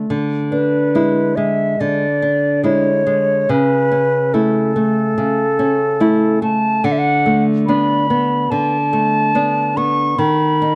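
A gentle rubato pulse around 71 BPM in 4/4 carries this tender romantic duo for flute and classical guitar in A major, tuned slightly low with A4 at 436 Hz. The nylon-string guitar opens the passage and fingerpicks a small, intimate accompaniment spanning C#3 to E4, moving through harmonies such as E7/D, A/C# and Bm7/D before touching B/D# near the close. At 0.5 seconds the concert flute joins with the melody, its pure, warm, straight tone cleanly tongued across a range that reaches up to C#6. Both instruments sit up front at matched levels, captured by close, detailed microphones that reveal the acoustic grain of the guitar. Light reverb gives the pair a soft sense of space, and the 10.8-second passage is cut from a longer piece, leaving an affectionate, glowing impression.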